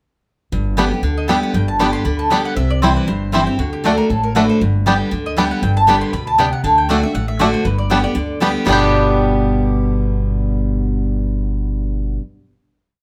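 A brisk 236 BPM bluegrass two-beat in 4/4 with a light swing on the eighths drives this short, lively piece in G major. The upright bass plays growly, thumpy root-and-fifth lines up front, the bright dreadnought guitar alternates bass notes and strums with bass runs, the twangy banjo rolls and vamps off the beat, and a second mandolin chops the off-beats in the background. A mellow, woody mandolin carries the fiddle-tune melody in running eighth notes from 1.2 seconds, moving through G, C and D before a final chord at 8.7 seconds, all in a light reverb.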